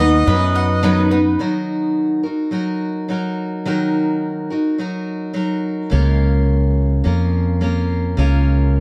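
A steady, straight 4/4 pulse at 106 BPM carries this brief acoustic folk passage in Eb minor, cut from a longer piece and tuned slightly below standard pitch, with an intimate, haunting mood. At the opening, a mellow harmonica sings the melody on Eb5 with light vibrato, a soft attack and a smooth top in a classical style, set in plate reverb and analog delay. Beneath it, a bright, metallic, nasal lap resonator guitar adds a barely audible slide line played with fingerpicks, and a bowl-back mandolin's double strings shimmer through picked arpeggios; the harmonica and resonator both fall away at 1.1 s. The picked steel-string acoustic guitar, up front with a roomy auditorium tone, carries the accompaniment throughout as the chords move from B/D# to Ebm. A round, dark fretless electric bass, amped and direct with analog chorus, sits low and forward, drops out at 1.4 s and returns at 5.9 s under a Bbm/Db chord, continuing with the guitar to the end at 8.8 s.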